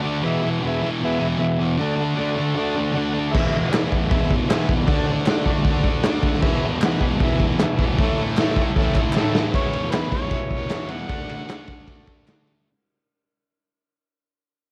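Raw and rowdy, this short garage rock cut from a longer piece charges along at 155 BPM in a straight 4/4, as a thick, double-tracked fuzz guitar riff and buzzy vintage combo organ chords with light vibrato open together, the organ adds a fill at 2.8 seconds before a saturated, gritty drum kit with a punchy kick enters up front at 3.3 seconds, followed by very quiet crisp handclaps at 3.7 seconds, and after a drum fill a mellow, distant harmonica takes the melody at 9.5 seconds as the whole thing fades out over light reverb with the character of a cassette home recording.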